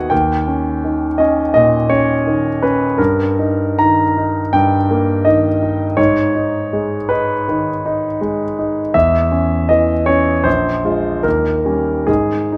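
A dark, warm production places a clear, intimate concert grand piano up front in a moderate scoring-stage reverb, where its deep bass, long sustain and audible action noise are all present. This brief romantic character piece for solo piano has a hopeful yet passionate mood, unfolding with an expressive rubato in 4/4 across a single section from the deep bass register up to the upper middle. The harmony opens on a dominant seventh, settles onto its minor home chord around 6.0 seconds, and returns to that dominant seventh at 11.2 seconds before the excerpt is cut off.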